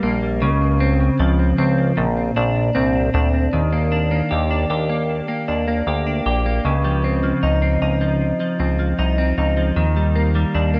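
A bright, twangy clean electric guitar plays picked arpeggios up front, coated in analog chorus and analog delay, through a short dream pop passage cut from a longer piece with an ethereal, floating mood. Beside it a glossy, nasal chorused synth bass with a pulse-wave and sawtooth edge and a plucky filter holds sustained low notes, while the harmony drifts from Dbmaj7 and Bbadd9 into a new section at 3.5 s built on Ebmaj7 and Dbmaj9. A moderate spring reverb and an echo-heavy mix with a rolled-off top end give the whole passage a hazy, suspended air.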